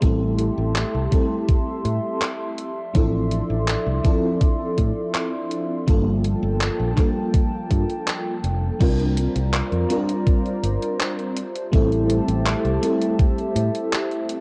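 A cassette-recorded haze with light digital reverb frames this hazy, melancholic vaporwave fragment at 82 BPM, where a lush FM electric piano layered with a soft pad shimmers through tremolo, ensemble chorus and tape echo while a warbling sawtooth pad with slow attack and long release sustains nostalgic chords underneath. Up front, a thumpy sampler-style electronic kick and a round, dark fingered electric bass with transformer saturation anchor the groove alongside a detuned 8-bit drum machine's crash cymbal, handclaps and hi-hat. The harmony drifts from Am7 through Dm9/A and Gm9, shifting at 8.8 seconds to C9sus4 before settling back on Am7.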